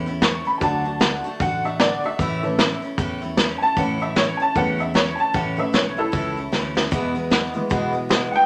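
Rockabilly at 152 BPM in 4/4 with a swung eighth-note feel, this short excerpt in A major has a retro, rowdy mood and sits in a wet club reverb. A detuned, jangly honky-tonk upright piano takes the solo throughout, woody and up front, ranging from E3 to C#6. A vintage brush drum kit, muffled and lo-fi with a medium-tuned snare and tight kick, drives hi-hat, kick and snare from 0.2 seconds and drops in a fill at 6.5 seconds. Underneath, an overdriven tine electric piano plays the bass line through a combo amp with a barky, gritty edge, while a bright, full-bodied picked dreadnought acoustic guitar adds accompaniment with audible finger squeak. The harmony moves from A to D at 0.6 seconds, back to A, and lands on E at 6.9 seconds.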